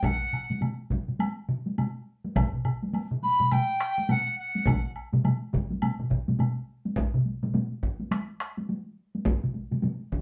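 Japanese traditional taiko drum ensemble music, powerful and driving, moving at 104 BPM in 4/4 with a swung sixteenth feel, heard as a short cut from a longer piece. A mellow, hollow bamboo dizi with a buzzing membrane carries the melody up front in a pure, straight, tongued tone until 4.9 seconds, set against a solo taiko played with heavy sticks and given a compressed, saturated edge, several taiko ensembles struck with heavy and hard sticks, one of them entering at 2.4 seconds, and a woody woodblock that drops out at 6.6 seconds. The band plays live together in one room under a wet studio reverb, with the taiko ensembles up front as the music moves into a new section at 7.0 seconds.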